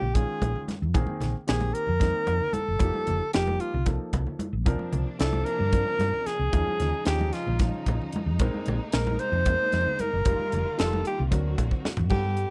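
Set in a brisk 7/8 at 226 eighth-note beats per minute with a straight feel, this electric jazz fusion clip, cut from a longer piece, sounds funky and soaring. A clear alto saxophone takes a jazz-style solo from the start, its soft attack and vibrato set up front with a slapback echo, moving through suspended ninth chords that cycle from Eb9sus4 through Bb9sus4, F9sus4 and C9sus4. Beneath it, a round, dark hollow-body fingered electric bass sits up front beside a crisp, polished drum kit with a punchy kick and high-tuned snare. Ringing congas played with soft hands and a warm, short-sustain grand piano fill in further back. A rich, bowed string section joins quietly in the background at 4.7 seconds with expressive vibrato and portamento, and a drum fill at 11.7 seconds leads over a closing Daug7. The sound is dry and close, in the manner of a 1970s studio recording.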